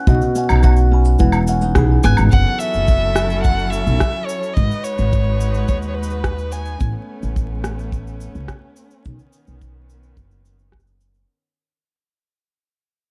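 A tinkling, slightly out-of-tune music box and a crisp, ringing kora roughened with vintage sampler grit open this wistful, autumnal folktronica excerpt at 107 BPM, both carrying delay, as a woody, thumpy pizzicato upright bass, a tight acoustic kick and a tape-toned electronic shaker, woodblock and rim click settle in; after a band accent at 1.8 seconds a smooth, rich solo violin takes the melody and a bowed chamber string quartet with vibrato and portamento holds sustained chords over F#m7, G#m7, Aadd9 and Badd9, while the track fades out from 2.3 seconds in a dark, close production dusted with vinyl crackle.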